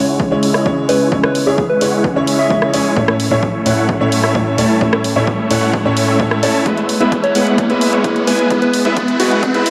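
Huge, detuned supersaw chords open this powerful, euphoric festival progressive house build-up at 130 BPM, together with a boxy grand piano whose action noise is audible, a round, warbling FM synth lead, and a barely audible fat analog bass, with the supersaws and piano pumping from sidechain and all three upper parts trailing dub echo. The supersaws carry a low-pass filter sweep through the whole passage over C#m, A and E, while a punchy, layered electronic kick and a big-room kit with hi-hat and rim click drive the beat. A background riser enters at 2.8 seconds, a drum fill begins at 6.7 seconds, and the chorused lead returns at 7.2 seconds, all within a dark production under light reverb.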